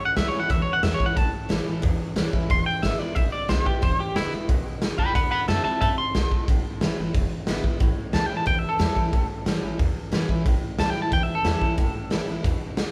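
Rockabilly at a brisk 181 BPM in straight 4/4, this rowdy, upbeat clip sits in A mixolydian and moves through a dominant-seventh progression of A7, E7 and D7. A twangy, clean electric guitar carries the melody up front with tremolo, opening with a solo that runs to 7.8 seconds before the music shifts into a new section. Beneath it, a jumbo steel-string acoustic guitar is picked with a full-bodied sound and audible finger squeak, while a pizzicato upright bass with gut strings adds a woody, thumpy low end from the background. The raw garage drum kit enters at 0.2 seconds, up front with a punchy kick, a medium-tuned snare and hi-hat, its tone saturated and gritty with a rolled-off top. The band sounds as if it is playing live together in one large studio room, with a moderate reverb lending space to the performance.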